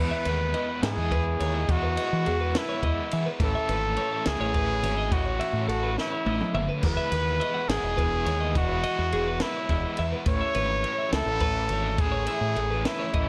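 A smooth trumpet with light vibrato sings up front over a growling, overdriven fingered bass, a double-tracked overdriven guitar riff with tremolo, and a bright twelve-string figure colored by tremolo and plate reverb that stops at 1.7 s, joined by twangy, compressed twelve-string arpeggios and a dry, compact cocktail drum kit with dark cymbals, a high-tuned snare and a punchy kick that enters at 0.3 s and plays a fill at 6.0 s, all in a playful, wistful 6/8 math rock and midwest emo excerpt cycling between Emaj9 and Amaj7 beneath the haze of worn, warbling cassette tape and light reverb.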